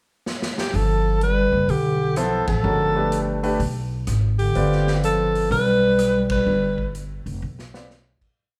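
Modal jazz in G mixolydian at 126 BPM with a swung, searching and open mood, where a breathy, subtone alto saxophone sings scooped, motif-based phrases up front over a dark bass clarinet harmony line mostly in thirds, a woody, thumpy two-feel upright bass, a swinging big-band drum kit keeping time on the hi-hat with fills at 0.3 and 7.4 seconds, and a concert grand piano entering at 2.2 seconds with syncopated quartal comping and audible action noise, all played live in one room with moderate large studio reverb, band accents at 2.4 and 6.2 seconds, and a fade-out over the G9 harmony.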